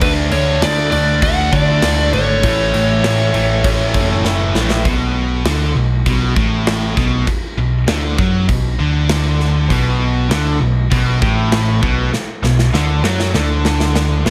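Anthemic and powerful, this hard rock excerpt at 99 BPM in straight 4/4 opens with a smooth overdriven lead guitar carrying a dark, tape-echoed melody until 4.2 seconds over a churning wall of riffing guitars (a bright cranked stack guitar with phaser that drops out and returns at 9.7 seconds, a double-tracked high-gain distorted guitar, and a sludgy distorted guitar in the background). A round, punchy overdriven picked bass up front and a big, bright-cymballed acoustic drum kit anchor the band; the kit's first fill bridges into a new section at 4.9 seconds and a second fill closes the excerpt. Everything sits in light reverb as the chords move from D5 through A to B5.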